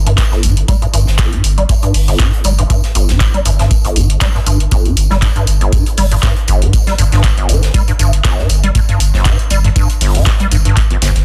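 A squelchy, resonant square-wave acid bass riff spans G1 to G3 under a filter sweep, overdrive, ensemble chorus and tape echo, pumping over a round, sine-like sub bass, a deep, dry electronic kick, a booming analog drum machine with metallic hats and handclaps, and a polished, airy studio kit of hi-hat, high-tuned snare and tambourine, giving this trippy, hypnotic, lightly swung acid house excerpt a dense, heavily limited modern sheen.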